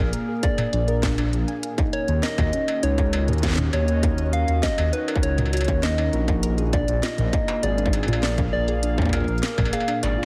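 Heavily compressed and radio-like, with light reverb and a digital ambience, this intricate, cerebral IDM fragment moves at 100 BPM in Eb minor, its chords shifting between Bb7 and Ebm7. A dark, detuned sawtooth bass rumbles up front with tube saturation. A mellow, warbling tape-like pad sits in the background, and a harp-like pluck rings out arpeggios through chorus and digital delay. Over these, a round, keys-like FM lead carries the melody. A distorted electronic kick joins an industrial kit with clanging snare, smooth hats, struck metal and toms, and both carry a tape-warm, large-room character until the kick drops out for a drum fill at 10.0 seconds.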